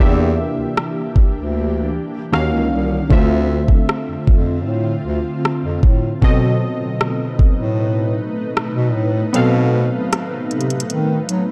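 A straight 4/4 groove at 77 BPM sets a slow, sensual pace for this contemporary R&B excerpt, with an electronic drum kit entering at 0.8 s on a knocking kick, metallic hi-hats and rim clicks placed up front in the mix. The kick falls away at 9.3 s, leaving the hats and rim to carry the final moments. Beneath it, a bass clarinet plays the bass line in a classical style, its tone present and forward. Round, full-bodied analog keys built from detuned sawtooth voices give the accompaniment a fast attack, decaying notes, a filter sweep and a touch of chorus, while an ethereal, airy pad holds sustained chords behind them with a slow attack, long release, ensemble chorus, built-in reverb, tremolo and a mellow sidechain pumping. The harmony moves through Em7b5, Ebm7, Dm7 and B7b9, deepening the longing mood within a dark, warm production that stays dry and close.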